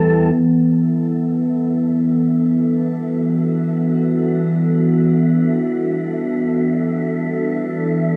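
In free time, this melancholic, spacious ambient excerpt in E minor rests on an up-front, warbling analog drone, while a glassy, ethereal FM pad holding an Em11 chord with ensemble chorus and a dark, breathy wind-like noise texture both fade in from 0.3 seconds, the whole heard through cassette-tape grit in a small, wet home-recorded room.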